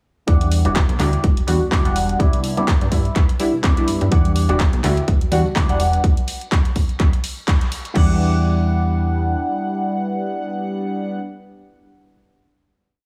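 A nostalgic, sensual filtered disco house groove opens at 0.3 s with a filter sweep over a punchy, overdriven four-on-the-floor kick, programmed hats, claps and crash, a faint tambourine, a funky syncopated sawtooth bass with a plucky, wave-folded bite, and a mellow, chorused polysynth playing dotted-rhythm rootless chords. A bright, twangy envelope-filtered guitar adds clean funk chord rhythms with spring reverb, while sidechain pumping gives the synth, bass, guitar and cymbals their breathing lilt. After a band accent at 7.5 s, the drums stop and the piece settles onto a sustained final Em7 chord from 8.0 s, carried by the synth and guitar, with the bass joining them until it drops out at 9.4 s.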